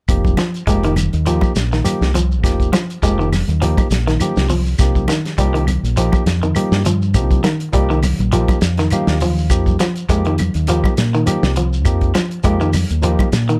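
A lightly reverberant mix opens this intense, driving afrobeat excerpt at 102 BPM in 4/4, with a swung sixteenth feel over F7(no3) and Cm7 chords. A round, dark fingered electric bass sits up front over a dry soul drum kit with a fat snare, tight kick and rolled-off top, joined by a grainy, mellow shekere, while woody claves and bright, thin-skinned congas stay in the background. A barky tine electric piano through a combo amp and a twangy, slightly broken-up electric guitar playing arpeggios, both bathed in plate reverb, carry the harmony, and the electric piano adds a fill from 8.6 to 9.5 seconds.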